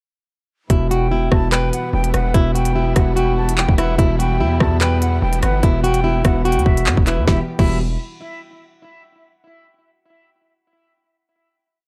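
Ominous and dark, this short drill hip hop piece in E minor moves at 146 BPM with a half-time feel, as a fingerpicked flamenco guitar loops a tape-echoed melody over a muted upright piano's mellow eighth-note arpeggio with audible action noise, distant bowed strings hold a lush sustained pad, an airy silver flute adds a sparse echoed counter-melody, a saturated 808-style bass drives long sub notes with pitch slides that follow the kick, and an up-front drill kit of hard-clipped kick, woody snare, handclaps, rim clicks and skipping hi-hat rolls carries the hook until a final chord rings out from 7.3 seconds.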